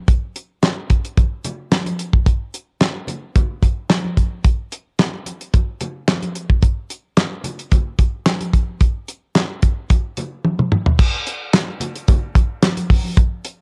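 A damped 70s drum kit sits up front in this danceable funk excerpt, its tight kick, fat snare, hi-hat, toms, crash cymbal and handclaps sounding acoustic and dry, with dark cymbals and a cassette tape coloring. The groove moves at 110 BPM in a straight 4/4 feel, the kit running from the opening moment to the close at 13.6 seconds. Low-tuned congas join at 0.6 seconds and stay in the background, their ringing tone compressed and saturated under soft hands. A drum fill at 10.4 seconds leads into a new section at 11.0 seconds. The whole piece is a home cassette recording, with light reverb and a small room ambience.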